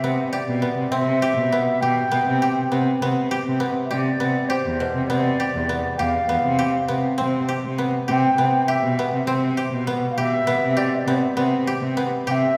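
A restless yet hopeful excerpt of contemporary chamber music in 7/8 pairs a distant, pure wooden flute singing a tongued melody with gentle vibrato with dry, woody koto arpeggios picked up front and a smooth, bowed cello bass line, all bathed in the lingering reverb of a church as the harmony moves between Cmaj9, G and Cmaj7.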